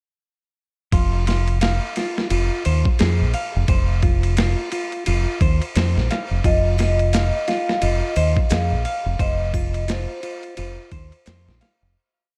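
Dark and cinematic, this short trip hop piece in F minor moves at 87 BPM with a swung sixteenth-note feel, settling into one groove over a single F7 chord. A gritty, overdriven boom bap drum kit sits up front, its thumpy kick, medium-tuned snare and ride cymbal cut from a compressed, looped breakbeat with edits, alongside a round, punchy fingered electric bass riding a syncopated riff. A clean semi-hollow electric guitar repeats a 16-step arpeggio pattern low in the mix, roughened by vintage 12-bit sampler grit, a low-pass filter and delay. At 6.5 seconds a ringing, band-limited vibraphone with slow motor vibrato enters with short song-like motifs through tape echo, soon joined by close-miked maracas, triangle and group handclaps in the background. The dry sound carries the wobble of worn, warbling cassette tape, and the piece fades out from 8.3 seconds to its close at 12.0 seconds.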